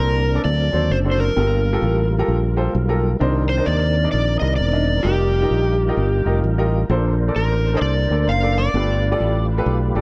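An up-front overdriven slide guitar with tape echo carries the melody until 9.5 seconds in this soulful, jubilant uptempo gospel excerpt at 130 BPM with a swung 4/4 feel, backed by a clear, woody upright piano, a growly, punchy fingered electric bass, and a tonewheel organ in the background holding sustained chords through a slow rotary speaker with light overdrive, chorus vibrato and key click, over a D7, Gm9, Cm9, F9sus4, Bbmaj9 and G9 progression in a dark, warm mix with light reverb.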